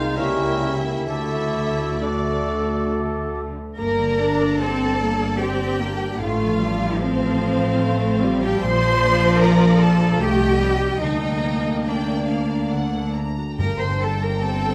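A slow, rubato romantic orchestral passage in G minor and 3/4, at 64-79 BPM, opens with a clear, distant violin section carrying the melody alongside a second, more intense violin line. A mellow clarinet, an airy, hollow flute, a warm oboe and a bassoon add brief supporting lines, while a French horn section holds chords in the background; these winds and horns fall away at 3.4 seconds. Beneath them a rich, focused viola section, a smooth, up-front cello section and a bowed double bass section carry on with a bright, ringing harp arpeggiating behind them, all in a reverberant hall with a dark production, and close, dry timpani enter at 13.6 seconds on a G minor chord, leaving a melancholic, yearning mood.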